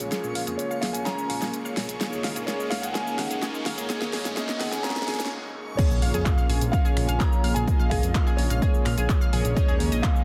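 Emotional and expansive, this progressive house cut opens on a build-up in which a smooth analog pad, glossy chorused polysynth stabs, a thick detuned analog bass, an overdriven deep house kit of cabasa, finger snaps, handclaps, hi-hat, crash and a fat snare, a reversed, dreamy swelling texture, round, warbling analog pluck arpeggios with delay and an intimate, boxy concert grand piano melody all sit under filter sweeps, a riser and a noise sweep, until a brief break gives way to an impact at 5.8 s, where the drop brings in a punchy, up-front electronic kick and a soft, pure synth bell second line amid lush hall reverb and a dense, heavily limited master.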